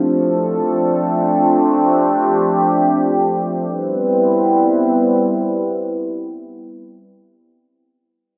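This hip hop excerpt drifts in free time in C major, with a dreamy, blissful mood. A single sweeping resonant pad carries the passage from 0.0 to 7.1 seconds, holding sustained chords between F3 and B4. Its detuned, wave-folded tone sits up front, with a slow attack, long release, and colour from chorus, phaser and a low-pass filter. The harmony rests on Dm7 before shifting to Cmaj7 at 3.7 seconds, where a second section begins. Light reverb and a digital ambience surround the pad in a rough home demo mix.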